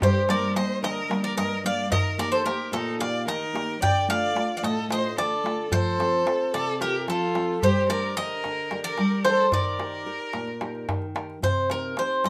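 Moody and brooding, this short passage of Greek folk music is cut from a longer piece and moves in a straight 7/8 metre. A bouzouki carries the melody up front, its picked double strings sounding mellow yet metallic, with some octave-doubled courses. Behind it, a single bowed violin plays a second line, heard at a distance with rich vibrato and expressive portamento, and it drops out at 10.9 seconds. A fingerpicked nylon-string guitar sits close and full-bodied in the accompaniment, its deep classical tone marked by audible finger squeak. A large metal-shell darbuka, played with hard hands, gives crisp, deep, dry strokes, while a modest small-room reverb lends the group a sense of shared space as the harmony circles through minor and major chords.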